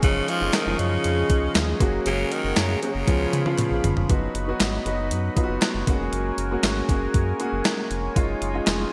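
Bright 1980s-style digital production in a lush hall gives this short cut from an uplifting, romantic pop tune in F# major a polished sheen, moving at a straight 118 BPM in 4/4. A raspy, gritty tenor saxophone with vibrato and scooped notes carries the melody through digital delay until 3.8 seconds, over an up-front concert grand piano with long sustain and subtle chorus, a smooth, warbling analog pad, and a round, deep analog bass. A clean 12-bit drum machine with a thumpy kick, gated reverb and tambourine drives the groove, with faint crisp handclaps, and a drum fill from 3.1 seconds over a C#7 chord leads into the second section, where chords such as B/F# and F#add9 lend a hopeful lift.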